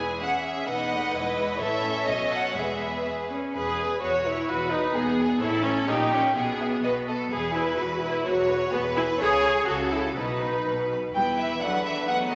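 Generous scoring-stage reverb with a 1.6 s decay surrounds this short cut from a quick classical-period movement for string orchestra, and its top end is gently rolled off. At 127 BPM in a straight 2/4 and in E major, the mood is graceful and spirited. The first violins carry the melody with a rich, smooth vibrato. Beneath them, the second violins play a clear second line that sits up front, while the violas give a focused accompaniment that is also forward in the sound. Lush symphonic cellos anchor the bass, and intense double basses sit in the background below them. The harmony moves through E, A and B7, touches an A#m6 color around 5.9 s, and lands on an E minor chord at 11.2 s as the passage is cut off.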